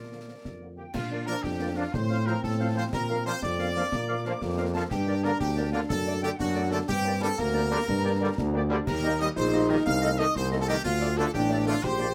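An up-front tuba with a warm, smooth top anchors this proud, rousing military-style march for wind band, cut from a longer piece and moving at 121 BPM in a straight 6/8 in Bb major. A bright trumpet section carries the melody, while a clear woodwind section with light vibrato, a pure, crisp-edged small flute group entering at 0.8 s, and a solo euphonium add second lines. A mellow, tight French horn section supplies very quiet accompaniment, and a close-miked trombone section holds sustained chords in the background from 1.3 s. Concert snare drum, concert bass drum and clash cymbals, with dark cymbals, sit close and dry behind the ensemble from 0.5 s. The harmony moves from Bb through G minor to Eb and D minor, all in the classical style and set in a moderate studio ambience.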